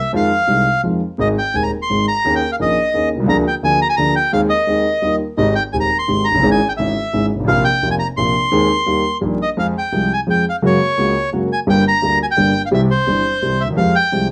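A reedy, dark bandoneon carries the melody up front from the first moment of this sultry, dramatic tango fragment in a rubato three, joined almost at once by a warm concert grand piano whose deep bass and long sustain fill out the accompaniment, all set in a moderate studio reverb with vinyl crackle, before the harmony darkens into minor at 9.6 seconds.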